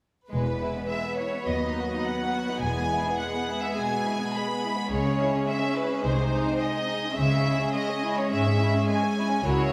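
A wet scoring-stage reverb of 1.8 seconds surrounds this lively, spirited excerpt from a quick classical-period movement in E major at 105 BPM, its rubato feel giving the string orchestra room to breathe. Up front, a clear, pure first violin section carries the melody sul tasto while a second violin section with a smooth top adds a floating inner line, the dark, intimate violas fill in the accompaniment, and softly attacked cellos with light vibrato join a dark double bass section on the bass. All five sections play together from 0.3 to 9.7 seconds, moving from E major through C# minor harmonies.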